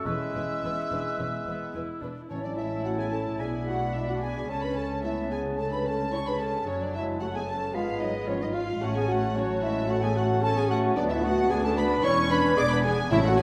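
Quick, dramatic and stormy classical-period orchestral movement in A major at 111 BPM, cut from a longer piece, where mellow French horns sustain chords beneath an intimate, sul tasto violin melody, the flute, dark clarinet, distant oboe and a second violin section weave second lines over mellow bassoon and viola accompaniment, woody cellos and double basses carry the bass, and hard-mallet timpani strike A2 at 2.3 and 13.1 seconds, all set in a wet scoring-stage reverb.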